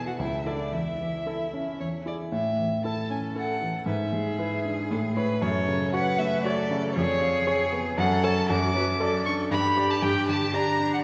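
Graceful and cheerful, this fragment of a quick classical-period piano trio movement in A major moves at 117 BPM in 3/4, with a rich, smooth violin carrying the melody up front with vibrato, an intimate grand piano accompanying close by with its action noise audible, and a distant, even cello entering at 0.1 seconds with a bowed second line, all bathed in the long, wet reverb of a church.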